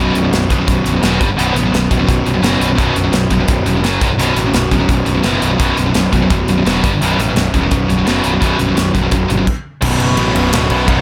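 Three picked electric guitars and a fuzz-laden bass open this dark, relentless heavy metal excerpt at 171 BPM, driving through power chords built on B5 with brief turns to G5, F#5 and C5, and a polished acoustic drum kit with a punchy kick enters at 0.2 seconds. A double-tracked, overdriven guitar sits up front over two bright, distorted guitars in the background, one scooped and high-gain, while the overdriven bass adds a thick low end heard both direct and through an amp. After the scooped guitar drops out at 9.5 seconds for a brief stop, the piece shifts to half time on B minor at 9.8 seconds, with light reverb lending the kit a small, airy room.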